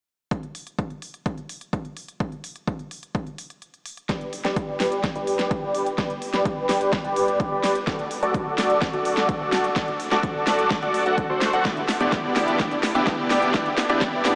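Festival progressive house at 127 BPM in G major, this anthemic, euphoric cut from a longer piece opens at 0.3 s with a punchy, up-front electronic kick and a pop kit of fat snare and crisp hats, then after a short break at 3.6 s a huge, detuned supersaw riff with chorus, delay, sidechain pumping and a filter sweep arrives at 4.1 s alongside a very quiet, saturated, nasal analog bass, as a drum fill drives the build-up over G, D and Em7 in a dreamy mix soaked in long reverb with a small-speaker sound.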